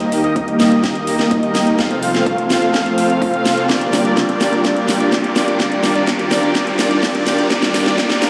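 Festival progressive house at 126 BPM, euphoric and anthemic, built as a full build-up cut from a longer piece: huge detuned supersaw chords sit up front with sidechain pumping, a low-pass filter sweep and dub echo over an Eb, F, Gm7, Cm progression, while a nasal, warbling unison lead arpeggiates high with vibrato and dub echo, a chorused lush pad sustains beneath, a house kit with cracking snare and metallic hats rolls through a drum fill, an electronic riser climbs in the background, a punchy layered kick enters at 0.4 s and drops out at 8.1 s, and a barely audible saturated sub bass hums underneath, all washed in a large hall reverb that sounds like a big system in a bare room.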